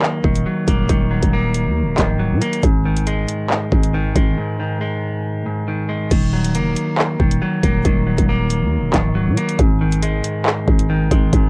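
A growling, buzzy 808-style bass, its sine tone hitting with a fast attack and then decaying, anchors this dark, menacing drill track from 0.2 seconds. It sits under a clean electric guitar placed up front, whose dark, fingered, compressed tone carries a cassette-tape colour as it accompanies the chords from Eb minor to Ab5. The electronic drill kit, also up front and tape-coloured, pairs a knocking kick with bright hi-hats, handclaps and crash cymbal in a half-time feel at 138 BPM in 4/4. A break arrives at 4.4 seconds before the second section begins at 6.1 seconds and returns to the same chord movement. The dry home recording on cassette, tuned to A4 = 445 Hz, shows lossy compression artefacts, and this short cut is taken from a longer piece.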